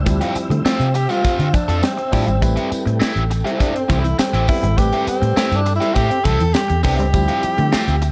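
Driving and cool, this short funk excerpt rides a straight 4/4 groove over Dm11 and Am7 chords. A breathy tenor saxophone carries the melody as an up-front, close-miked solo, its whispered, intimate tone colored with vibrato and an analog delay. Underneath, a vintage foam-muted fingered bass sits round and punchy, while a crisp fusion drum kit adds a high-tuned snare, punchy kick and hi-hat, with a jingly tambourine tucked in the background. An overdriven semi-hollow guitar supplies picked accompaniment through a wah, a barky tine electric piano fires lightly driven stabs through a combo amp, and a dark, clean electric guitar plays a background riff with harmonic tremolo. A very quiet, flute-like tonewheel organ holds sustained chords through a fast rotary speaker. Light reverb and small-room ambience give the whole a dark, warm production.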